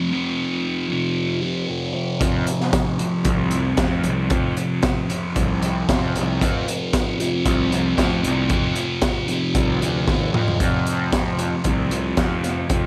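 Psychedelic rock at 114 BPM in a trippy, hazy mood, cut from a longer piece, opening with a thick, dark, double-tracked fuzz guitar riff on an F5 chord through phaser, joined at 2.2 seconds by an overdriven, warm fuzz picked electric bass and a gritty, saturated breakbeat drum kit with a punchy kick, high-tuned snare and rolled-off top, all up front in a small room with light reverb, before a drum fill at 10.1 seconds leads into a new section.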